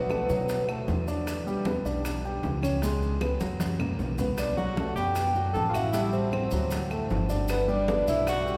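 Soft-mallet vibraphone carries the melody in this sunny, sophisticated Afro-Cuban jazz excerpt at 154 BPM, its metallic, ringing tone shimmering with fast motor vibrato, joined by a bright tenor saxophone second line with light vibrato and scooped notes; both sound briefly at the start, stop, and return at 4.4 seconds after a drum fill. Underneath, an up-front grand piano accompanies through chords such as Em7 and Gmaj7 while a woody pizzicato upright bass anchors the low end. Ringing congas, tight high-tuned bongos and dry claves sit in the background, and grainy maracas sound distant. A cathedral reverb gives the recording a long, spacious tail.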